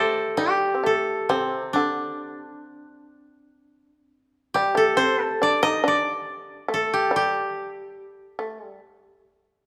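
Calm and austere, this rubato fragment of Japanese traditional chamber music sets a bright, woody koto up front, its melody plucked with fingerpicks, over a mellow, buzzing fretless shamisen whose percussive plectrum-plucked second line sits lower and softer, both ringing in a moderate recital hall reverb before the shamisen stops at 8.8 seconds and the koto at 9.2 seconds.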